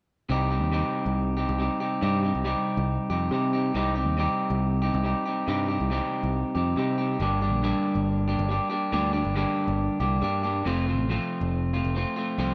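Rock in C dorian at 139 BPM in a straight 4/4, this short excerpt cut from a longer piece carries a bittersweet, restless mood. An overdriven electric guitar plays a picked riff from 0.3 s to 12.5 s, its compressed, warm, overdriven tone sitting up front. A picked electric bass holds down the low end across the same span, direct and warm. The harmony moves from Cm to Gm at 7.2 s and then to F. The sound is dry and close, in the manner of a 1970s studio recording, with the two instruments kept near and immediate.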